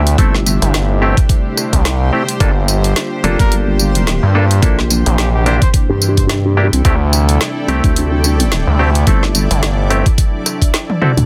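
Playful and swaggering, this glitch hop passage struts at 108 BPM in 4/4 with a swung sixteenth feel, sitting in G dorian and moving through Am7, Gm7, C9, D7sus4 and back toward D9. Two up-front basses drive it: a gritty, saturated synth bass with a nasal, sync-edged bite, and a dark, wobbling vowel-sweep bass thickened with chorus. An overdriven, knocking electronic kick pairs with a layered drum and bass kit of woody snare, rim click, bright hats, tambourine and toms, which closes with a fill at 10.9 seconds. Stringy, hollow clav stabs pump against the sidechain and echo through digital delay, while a very quiet, detuned analog pad and a cloudy, evolving granular pad with its own reverb hover beneath. Briefly, from 3.4 to 5.7 seconds, a clear trumpet with light vibrato floats in the background through delay, all inside a dense, heavily limited modern mix with light reverb, cut from a longer piece.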